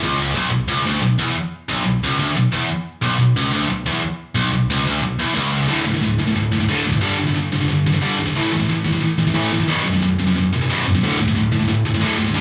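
Aggressive and relentless, this excerpt of metal at 180 BPM in 4/4 with a straight feel, in B minor and tuned to A4 = 436 Hz, features a bright, picked, double-tracked high-gain electric guitar playing up front throughout, ranging from B1 to A3, holding on Bm before moving at 5.7 s through the power chords D5, G5, A5, B5 and back to D5, all set in a moderate large studio reverb that gives the sense of a band playing live in one room.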